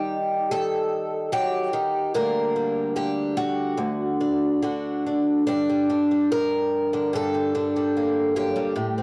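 Haunting and reflective, this short folk fragment in G harmonic minor drifts at a rubato 74 BPM as a lone picked twelve-string acoustic guitar, woody and shimmering with octave-doubled strings and a boxy, old-string character, moves from Eb through Gm/D and D to land on Gm at 5.5 seconds, sitting up front in studio reverb with the grain of a home cassette recording.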